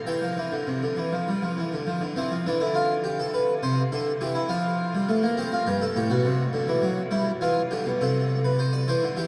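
A solo harpsichord, close-miked and up front with a brilliant, plucked French-style tone drawn from three sets of strings, plays an elegant, stately baroque-style two-part invention in 6/8, cut from a longer piece, its brief opening section giving way at 1.9 seconds to a longer second section while a huge, ambient reverb places the instrument in a vast, echoing space.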